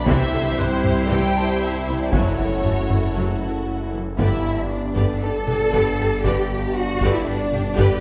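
Tense and relentless, this hybrid orchestral and electronic film cue moves at 117 BPM in a straight 4/4, passing from C through F#m7 to G in a fragment cut from a longer piece. Violin sections carry the melody and a lush second line over expressive violas, close cellos, a focused double bass section, mellow French horns holding chords, and a dark chorused analog pad with a slow attack, while a swirling, saturated, detuned saw bass with phaser drives the low end beneath hard-stick taiko drums. A very quiet, boxy felt-muted upright piano adds texture high above, and the whole blend sits in the 1.6-second reverb of a recital hall.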